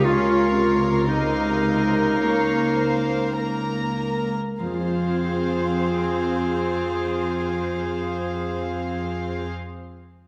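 Longing and bittersweet, this short cinematic passage, cut from a longer orchestral film score, moves with a free, rubato feel, slowing through its first 4.6 seconds before the harmony shifts at 4.6 seconds. A clear, classical solo clarinet and a dark, intimate violin section played sul tasto carry the second lines over a floating, distant viola section, while a close, up-front cello section holds the bass. A warm concert harp plays ringing, fingerpicked arpeggios in the background, and the ensemble sits in the wet reverb of a scoring stage.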